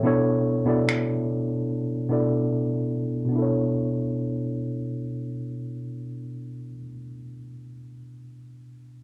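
Moody and sensual, this contemporary R&B fragment at 73 BPM in B minor rests on a worn, slightly out-of-tune tine electric piano voicing a Bm11 chord through a low-pass filter that sweeps over the opening, with a brief burst of up-front electronic finger snaps re-recorded in a small room at 0.9 seconds and a silent gap from 2.5 to 3.3 seconds, all captured as a cassette home recording in a wet, close booth ambience.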